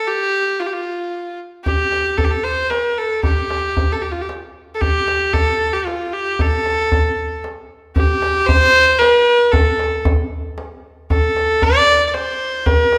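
A single bowed kamancheh opens this Persian modal piece in dastgah shur on A, its bright, earthy tone carrying a longing, soulful melody between F4 and D5, shaded with light vibrato and portamento. At 1.7 seconds a deep tombak joins up front, setting a straight 3/4 pulse at 114 BPM, and the music moves into a new section at 8.0 seconds. A recital hall reverb with a 1.5-second decay surrounds the pair in this passage cut from a longer performance.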